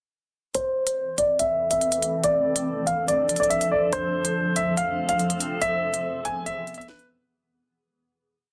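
A menacing, dark drill hip hop breakdown in A harmonic minor at 142 BPM with a half-time feel opens at 0.5 s on a bright, worn concert grand piano looping an up-front melody, its action noise audible through low-pass filtering and delay, over an electronic drill kit of sharp snare and crisp, skipping hi-hats with fast rolls, while a cloudy, detuned granular pad enters at 1.3 s with slow-attack phased chords moving through Am, Dm, F and E under a filter sweep, before a break and fade-out from 5.6 s close the dense, heavily limited piece.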